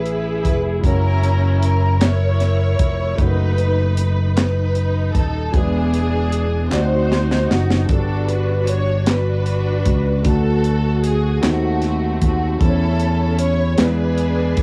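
Hopeful and soulful, this slow gospel excerpt in A major moves at 51 BPM in a straight 6/8, cut from a longer piece and captured as a home recording on cassette with light reverb. A lush, bowed studio string section carries the melody up front, its smooth vibrato sitting on a plate reverb and cassette tape coloring, while a grand piano fills in accompaniment in the background with the same tape and plate treatment. A fingered electric bass sits direct and amped up front, and a tight funk drum kit with a high-tuned snare, tight kick and hi-hat sounds dry and polished, entering at 0.1 seconds and taking a fill from 6.7 to 7.9 seconds. Crisp group handclaps join at 2.0 seconds from a small room in the background. The harmony travels from Amaj7 through F#7, B7/F#, E7 and D7b9 to Gmaj7, then passes D6 and D#dim7 before reaching A/E and E7.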